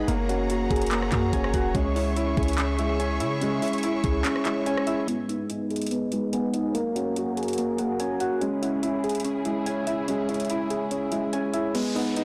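Trap-flavoured hip hop at 144 BPM in a half-time feel, this short cut from a longer piece sounds melancholic and eerie. A dark, mellow concert grand piano sits up front with accompaniment, joined by soft, warbling electric-piano-like synth keys playing arpeggios through chorus and digital delay, while a lush, bowed symphonic string section holds smooth sustained chords with vibrato. A deep, boomy 808-style bass underpins the opening until 4.2 seconds, and a trap kit with a knocking kick, metallic hats, handclaps, rim clicks and crash cymbal drives the groove, its kick dropping out briefly before the second section arrives at 5.1 seconds. That second section brings a filter sweep as the harmony moves through G#m, F#add9 and C#m. The whole mix sits in a lush hall reverb and has a blown-out, overdriven character, and an electronic downlifter closes the clip at 11.7 seconds.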